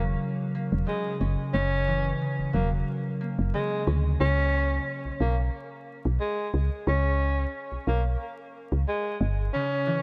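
Dark and tough, this boom-bap hip-hop fragment moves at 90 BPM in 4/4 with a light swing on the 16ths, shifting from F#7 to a rootless Gdim at 4.2 seconds. A breathy tenor saxophone carries the melody up front with subtone, vibrato and scooped notes, its whispered tone filtered and trailed by delay, while a fingerpicked concert harp rings underneath and a woody, round FM bass sits forward until 9.5 seconds. The dreamy mix is soaked in a huge ambient reverb and dusted with vinyl crackle.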